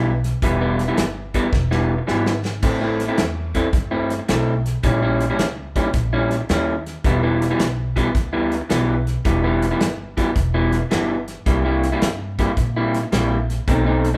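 A swung 4/4 shuffle at 109 BPM drives this soulful, brooding electric blues excerpt in E minor, where an up-front, slightly broken-up, lo-fi electric guitar riff through a small old amp plays over a woody, growly pizzicato upright bass and an acoustic country drum kit with a punchy kick, medium-tuned snare and dark cymbals that plays a fill from 1.5 to 2.6 seconds, all sounding like a band playing live in one room with moderate large studio reverb as the chords move from Em through Am and A#dim7 back to Em and on to C7.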